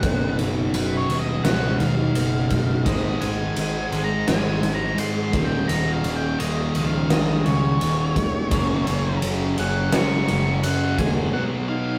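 Restless and anthemic, this quiet-loud alternative rock passage moves at a straight 85 BPM in 4/4, cut from a longer piece and cycling through Cb, Ab, Eb and Gb before returning to Cb. A dark, octave-fuzz lead guitar carries the melody as a solo high above the band, while a thick, bright fuzz guitar plays the main riff beneath it. A growly, overdriven electric bass plays a picked line in the low end, and a big acoustic drum kit sits up front with a punchy kick, fat snare and ride cymbal. A tight distorted guitar joins the riff at 2.9 seconds from the background, and a very quiet steel-string acoustic guitar picks arpeggios with audible finger squeak. The drums drop out at 11.1 seconds and the bass follows at 11.3 for a brief break, all within a rough rehearsal-room sound and a moderate stone room reverb.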